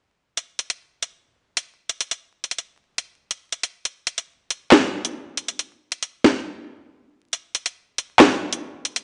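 A half-time 4/4 groove at 138 BPM drives this menacing, tense hip hop fragment, cut from a longer piece and carried entirely by an up-front electronic drill drum kit of handclaps, warm hi-hats and a sharp snare, roughened by vintage 12-bit sampler grit and given a tape-warm sheen. A break arrives at 6.5 seconds, and from 7.3 seconds the kick drops out for the closing stretch. A moderate recital-hall reverb adds digital ambience, while vinyl crackle and a dulled top end lend the recording a dusty cast.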